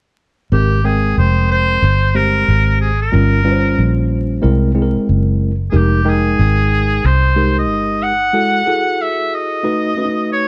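Relaxed jazz-hop at 92 BPM in Ab major with a swung 16th-note feel, where a clear, distant classical-style oboe sings the melody with light vibrato over a worn, slightly out-of-tune tine electric piano and a dark, round, foam-muted fingered electric bass that drops out at 8.3 s, all wrapped in light small-room reverb and vinyl crackle through rich chords like Abmaj9, Fm11 and Gbm9 in this brief, warm excerpt.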